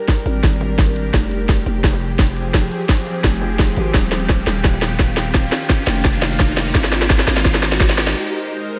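Cinematic and spacious, this short cut from a longer half-time drum and bass track moves at 171 BPM in 4/4, building the whole way through over a Gm, Fm, Ebadd9 and Ab progression. A bright, string-like drone holds sustained chords from the very start, its detuned sawtooth unison and noise layer giving it a tense edge, with slow attacks, long releases, vibrato, a phaser and its own reverb, all pumped by sidechain ducking. From 0.1 seconds a tight, up-front electronic kick and a layered kit of cracking snare, crisp filtered hats and toms play a drum fill that runs nearly to the end, both carrying a tape-warm, produced character and studio reverb. Beneath them a growling, buzzy 808-style bass with a fast attack and decaying tail enters at 0.3 seconds, while an electronic riser hovers in the background from 1.4 seconds. The drums drop away for a brief break at 8.2 seconds, leaving the drone to ring out in the light digital ambience.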